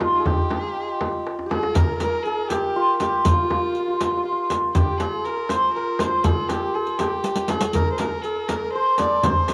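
Warm and festive, this Persian modal ensemble piece moves at 80 BPM in a straight 6/8. A bright, shimmering hammered santur carries the melody up front, while a pure, airy-bowed solo violin floats a soft-edged, slightly boxy second line alongside it, both with a cassette-tape tint. A deep, large frame drum sits forward and a warm tombak stays in the background, both sounding vintage and band-limited; after a drum fill at 1.3 seconds, a close, dry riq with dark jingles joins at 1.8 seconds, and another fill arrives at 7.2 seconds, all in a homey cassette recording washed in moderate spring reverb.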